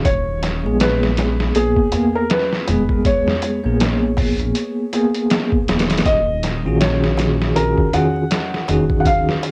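A bell-like tine electric piano sits up front in this hypnotic, melancholic trip hop fragment, cut from a longer piece, its bright, clean tone roughened by vintage 12-bit sampler grit, tremolo, tape echo and a low-pass filter that sweeps across the whole 9.5 seconds. Beneath it, a sampler-style drum kit plays at 80 BPM in 4/4 with a swung sixteenth feel, pitched down, compressed and muffled, with a thumpy kick, a medium-tuned snare and hi-hat, all re-recorded in a small room and coloured by cassette tape. A dark, detuned saw bass rumbles deep and up front with a beating, sustained tone, stopping at 8.9 seconds. A felt-muted upright piano carries the melody, soft and intimate with audible action noise and short sustain, set in dub echo and cassette tape. In the background, a large, deep clay darbuka adds close, dry hand percussion. The harmony moves from Abmadd9/Eb to Ebm11 at 6.1 seconds, all captured as a home cassette recording in a modest booth.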